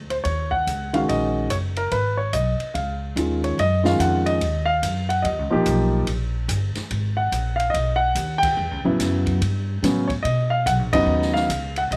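Moody and smoky, this jazz piano trio passage swings at 144 BPM in 4/4 in E-flat minor, cut from a longer piece. The concert grand carries the melody up front with a warm tone and deep low end, ranging from the middle register up into the high treble. Beneath it, a woody, growly upright bass is plucked pizzicato on steel strings, sitting close and present in the low register. The acoustic drum kit sits further back, its natural small-room sound built from dark ride cymbal and hi-hat, a medium-tuned snare and a boomy kick. After an opening stretch over Ebm7, Abm and Db, the harmony shifts at 3.6 seconds toward Gb5, Eb, Abm9, A9 and B, with the whole band striking accents at 8.4 and 10.9 seconds. Light reverb gives the trio a gentle sense of space.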